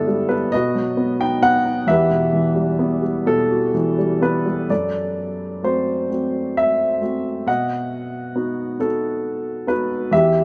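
A dark, boxy baby grand sits up front in a huge ambient space, its long reverb tail hanging around each note while the clatter of the piano's action stays audible up close. This is a lyrical classical piece for solo piano, a brief fragment cut from a longer work, and its mood is wistful and shadowed. The playing is freely rubato over a lilting 6/8 at a slow, unhurried pace, ranging from low E2 up to G5 with a mellow, intimate touch. The opening phrase moves from Em7/G to B and settles on a plaintive Emadd9. At 4.7 s the music turns toward a second idea, darkening through F#dim before coming to rest on B as the fragment closes at 10.4 s.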